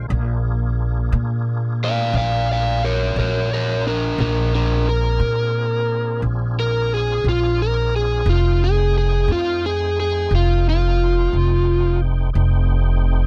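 A straight 12/8 slow blues at 59 BPM rolls through this gritty, rollicking excerpt in Bb mixolydian, with a woody, growly upright bass up front, a softer tonewheel organ holding full, lightly overdriven chords through a slow rotary speaker and chorus vibrato, and a bright, picked overdriven electric guitar soloing from 1.8 to 12.0 seconds over a move from Bb7 to F7, all in a dry, dark mix.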